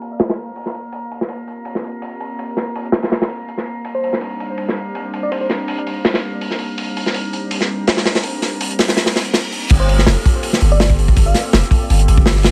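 Frenetic yet nostalgic, this drum and bass excerpt with a jungle edge races along at 164 BPM in G minor, its sixteenths carrying a slight swing. A crunchy breakbeat kit sits up front with a tight kick, medium-tuned snare, hi-hat and dark crash cymbals, its small-room sound smooth and rolled-off at the top. Beneath it, a warbling, lo-fi pad of detuned, wave-folded tones holds sustained chords from Gm7 to Cmadd9/G, its chorus, reverb and 12-bit sampler grit shaped by a filter sweep, while a calm, glassy texture of drifting overtones hovers alongside. From 3.9 seconds a sparkling, bell-like FM electric piano surfaces in the background with chorus, phaser and dub echo. A reverse cymbal at 9.1 seconds leads into the drop at 9.7 seconds, where a deep, sine-toned 808-style bass enters up front on a Gm11 chord and the electric piano returns.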